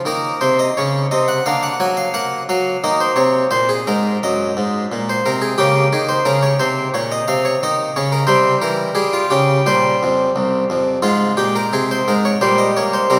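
A solo harpsichord in the French style carries this grave, flowing baroque-style suite movement, its brilliant, airy plucked tone doubled by octave strings and placed up front. The playing moves at 88 BPM in 4/4 with a rubato feel, and the instrument is tuned to A4 = 439 Hz. It spans from C2 up to Ab5, opening on an Eb5 at 0.1 seconds before passing through Bb/D, Ebm and Bbm harmonies. A turn to C and a high C5 around 9.7 seconds lead into richer Abmaj13 and Bbm69 colours near the close. The harpsichord sits in a wet cathedral space whose long reverberation lingers, and the passage is cut from a longer piece, ending at 13.2 seconds.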